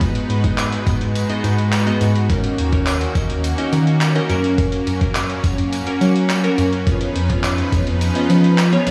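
Dance-pop in an energetic, confident mood, this short cut from a longer piece is driven by a hollow, organ-like FM bass and a muffled, tape-toned sampler-style kit of handclaps, hi-hat and thumpy kick (the kick dropping out from 1.2 to 2.3 seconds), with glassy, detuned digital keys and a smooth, soft-attack supersaw pumping against the sidechain, a jingly tambourine in the background, and the whole mix sitting in a light stone-room reverb over Abm7, Ebm7, Gb and Db7/F.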